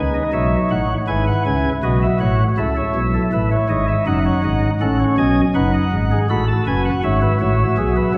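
Stately yet lively, this short baroque-style classical fugue excerpt for pipe organ moves in a straight 4/4 pulse and is cut from a longer piece. A solo pipe organ on soft flute stops carries all four voices from low F#1 up to B5, its up-front baroque voicing colored by chiff and a tremulant shimmer. The harmony travels from B through E/G#, A and D#dim/F# to B7/F# before settling on E/G#, all set in the wet bloom of a 1.5-second scoring-stage reverb.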